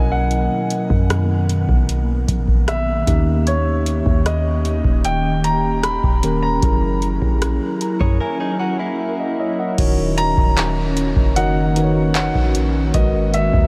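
A dreamy, reverb-soaked mix sets a romantic, smooth contemporary R&B mood at a slow 76 BPM, with a dark baby grand piano carrying the melody through tape echo over a mellow tine electric piano and an ethereal, detuned pad whose sustained chords pump under ensemble chorus. A boomy 808-style bass runs from the start, and an up-front analog drum machine with a deep kick, metallic hats, handclaps, rim clicks and crash enters at 0.3 seconds, while the tine electric piano plays a fill from 7.4 seconds as the drums drop out between 8.2 and 9.8 seconds. From 8.0 seconds, across that gap, a direct-recorded clean guitar adds brief picked, compressed arpeggios through tape echo before the harmony turns from Bmaj7, D#7 and F#7 toward D#m7 and G#m9 in this excerpt.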